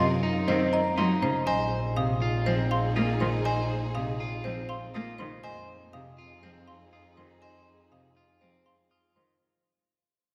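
A wet concert-hall reverb surrounds this bright, hypnotic fragment of minimalist classical pattern music at 121 BPM in 4/4, which fades out across its 9.4 seconds. A close-miked, dry marimba with hard mallets and woody padauk bars carries the melody, while a vintage, band-limited xylophone with rubber mallets and a slightly broken-up, picked electric guitar play arpeggios. Beneath them, an expressive bowed cello with portamento, a focused chamber string section holding sustained chords in the background, and an up-front, smooth-topped double bass support harmony that moves from Gbmaj7#11 to Bb7sus4 at 1.5 seconds and Fm7 at 5.4 seconds.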